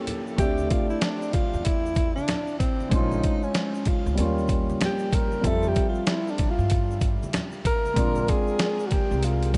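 Nocturnal and cool, this jazz-hop cut from a longer hip hop piece swings on a gritty, compressed sampler-style drum kit with a thumpy kick, as a woody pizzicato upright bass enters at 0.4 s beneath a dark, mellow grand piano with audible action noise and subtle chorus, a breathy, close-miked alto saxophone with vibrato and tape echo steps up front for a solo from 0.4 s, and ringing congas and tube shaker sit in the background, the whole mix soaked in a huge, dreamy reverb with softened highs.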